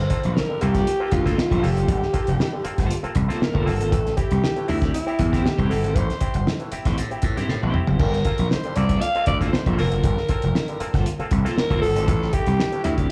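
A raspy alto saxophone carries the melody in a short funk excerpt at 118 BPM in G dorian, its smooth top and vibrato touched by a slapback echo. Underneath, an overdriven slap bass sits up front, bright and punchy, while a cloth-damped drum kit thuds along with a fat snare, tight kick, dark cymbals and a muffled, rolled-off top. A mellow, stringy clav adds stabs through a combo amp with auto-wah and slapback echo, and a clean, twangy electric guitar enters at 0.7 seconds in the background with tremolo. The harmony alternates between Gm11 and Am7, and a drum fill at 7.5 seconds marks the return to Gm11. The whole band is heard through a venue's PA in a small club room, with club ambience and a faint mains hum giving the cool, hypnotic groove a lo-fi live feel.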